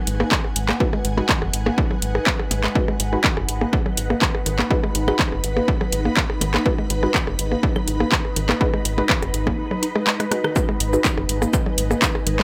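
Built on a straight 4/4 pulse at 123 BPM, this hypnotic, clinical minimal techno excerpt in G# minor rests on a single G#m7 chord, with a punchy overdriven electronic kick, an up-front garage kit of handclaps, metallic hats, rim click and shaker with a fill at 10.2 seconds, overdriven percussion blips and claves in dub echo, a rubbery, nasal square bass pumping under sidechain, a woody mallet-like synth pluck riff in the background, muted filtered dub chord stabs, an ethereal airy pad, and, from 10.6 seconds, a very quiet pulsing gated texture, all in light reverb.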